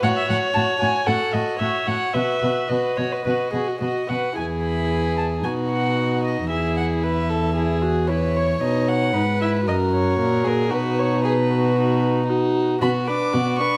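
Set in the moderate reverb of a scoring stage, this graceful, cheerful excerpt from a quick classical-period string quartet movement moves at 114 BPM in 4/4 with a rubato feel, as a dark, nasal, distant first violin carries the melody over an airy-bowed, close second violin line, a light-vibrato viola accompaniment and an up-front cello bass, all four bowed by single players in period style with a reedy gut-string tone.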